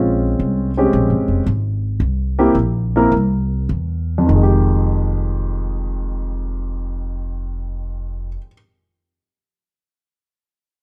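The recording sounds close and intimate, set in a light reverb, with both players up front. This is a moody, late-night jazz piano trio fragment in F minor and 4/4, cut from a longer piece, moving at 98-115 BPM with a swung eighth-note feel and slowing down over the opening 4.3 seconds. An upright piano with a woody tone carries the melody between F2 and Bb4, its plate reverb lending a soft halo while the audible action noise keeps it personal and warm. Beneath it, a pizzicato upright bass on steel strings holds the low end from F1 to E2 with an acoustic, woody, warm body. The harmony moves from Bbm7 to C7 at 2.0 seconds and settles on Fm9 as a new passage begins at 4.3 seconds.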